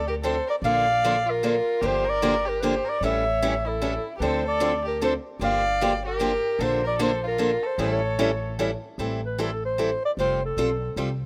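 A swung 3/4 lilt at 151 BPM drives this fiery, bittersweet slice of acoustic string swing in the jazz manouche tradition, cut from a longer piece. Up front, a warm clarinet carries the melody with light vibrato and a jazz phrasing, while a single bowed violin adds a smooth, nasal second line with its own vibrato before dropping out at 8.5 seconds. A bright, picked steel-string parlour guitar, also forward in the mix, supplies the accompaniment from 0.2 seconds, its tone a little boxy. Underneath, a pizzicato upright bass on gut strings gives a woody, thumpy, dark foundation. The harmony moves through minor-key changes like Dm7, Bbmaj7, Gm7 and A7 before a new section at 9.0 seconds turns to Am7 and Fadd9. Light reverb and small-room ambience give it the feel of a rough home demo.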